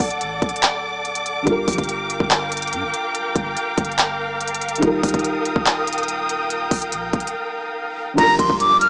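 Driving a half-time trap groove at 143 BPM in 4/4, a trap drum kit sits up front with a hard-clipped kick, crisp hi-hats, handclaps and crash cymbal, while a deep, boomy 808-style bass with a sine body, a noise layer, a fast attack and a decaying sound rumbles beneath. This menacing, hard-hitting hip hop excerpt in G minor opens on a D chord before settling into Gm7 at 1.5 seconds and moving to Ebadd9, with a dark symphonic string section holding lush, bowed, vibrato-rich sustained chords prominently throughout. A felt-muted upright piano joins at 1.4 seconds, its thick-felt tone soft, mellow and intimate with a short sustain as it fills in the accompaniment. Breaks pass at the start and again before 8.2 seconds, where a breathy silver concert flute arrives with a close-miked, straight-toned, tongued and expressive melody high in its range, marked by a very quiet electronic impact as the harmony returns to Gm7. 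The sound is dry and gritty, with light small-room reverb and a small-speaker character, and the clip is cut from a longer piece.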